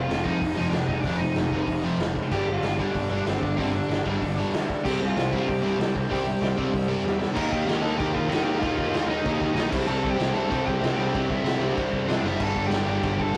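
A straight, pounding 4/4 punk rock drive carries this aggressive, urgent fragment of a longer piece, with a gritty, up-front garage drum kit of punchy kick, crash, hi-hat and snare under a growly, fuzz-soaked picked bass. A double-tracked, overdriven garage guitar riff sits up front, a bright high-gain distorted guitar adds a second riff from the background, and a dark lead line from a small cranked amp rides above. Drum fills at 7.1 and 12.2 seconds mark the turns in the progression, and the whole take has the rough, saturated feel of a rehearsal-room recording.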